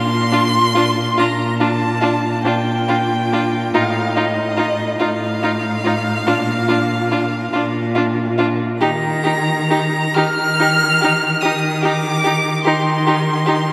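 Warm and tender, this brief excerpt from a slow romantic movement for string quartet sways in 12/8 at 43-50 BPM in Bb major, with a rubato feel and the sound of a reverberant church. Up front, the first violin sings the melody high above with vibrato and expressive portamento, while the cello carries the bass with a soft attack, gliding portamento and a rich tone. Between them, a focused second violin plays a second line and the viola gives a smooth, even accompaniment, both entering at 0.3 seconds.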